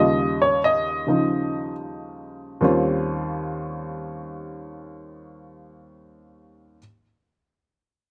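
In free time, this short cut from a longer solo jazz piece drifts through Eb mixolydian with a relaxed, warm mood, the harmony moving from Eb9 to Eb13 at 2.6 seconds. A lone baby grand piano carries it from Eb2 to Eb5, its dark, mellow tone sitting up front with audible action noise, short sustain and slapback echo. The outdoor recording has little reverb and an intimate, natural closeness.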